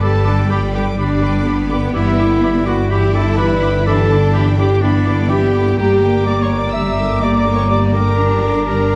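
The up-front double bass section anchors this heroic, adventurous cinematic excerpt with a deep, lush bowed foundation, joined by a focused cello section and a tight, mellow French horn section holding sustained chords, while a distant viola section accompanies and a ringing, thumb-plucked harp arpeggiates in the background. A soft-attacked, expressive violin section carries the melody from behind, supported by second lines from a clear oboe, a focused violin section, an airy silver flute and a roomy, distant clarinet. Everything plays throughout the 9 seconds as the harmony moves from G through Em7/G to Gm at 5.8 seconds, set in a dark production with a wet recital hall reverb.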